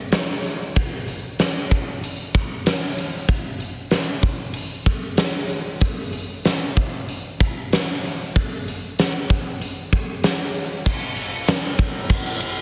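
Rock in a brooding, angsty mood at 95 BPM in a straight 4/4, this short cut from a longer piece features a big acoustic rock drum kit up front in a bright stone room, with a punchy, softly clipped kick and a fat, softly clipped snare alongside hi-hat, ride and crash cymbals, light reverb and a dense, heavily limited modern master, shifting into a new section at 10.9 seconds before it ends at 12.6 seconds.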